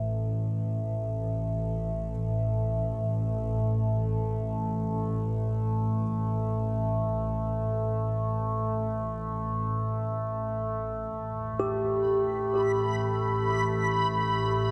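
A sawtooth-and-sine drone fades in with resonant, sweeping overtones and chorus, over a veiled, con sordino double bass section bowed low with light vibrato, in this spacious, reflective ambient passage cut from a longer piece. The harmony settles on Gadd9/A at 11.1 seconds, and a clean, direct tine electric piano enters at 11.6 seconds with phased arpeggios and diffuse delay, followed at 12.6 seconds by a reversed, swelling granular texture with a dreamy, detuned triangle tone. A cathedral reverb with a 6.2-second tail surrounds the music.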